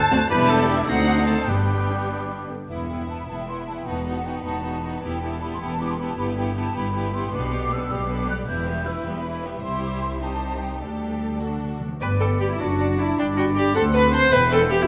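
A quick, graceful classical-period movement for symphony orchestra in a lively 6/8 at 103 BPM, opening in E minor and turning to G major from 7.3 s, with a violin section carrying the lush, portamento-tinged melody from the background while a close, rich second violin section and an airy flute ensemble weave second lines above a clear, up-front viola accompaniment and focused cellos and double basses. A bright clarinet, a vintage-toned oboe and a mellow French horn section appear only in the opening and returning passages, from 0.0 and again from 12.0 s, and very quiet, round timpani add a fill at 11.4 s, all set in a moderate scoring-stage reverb.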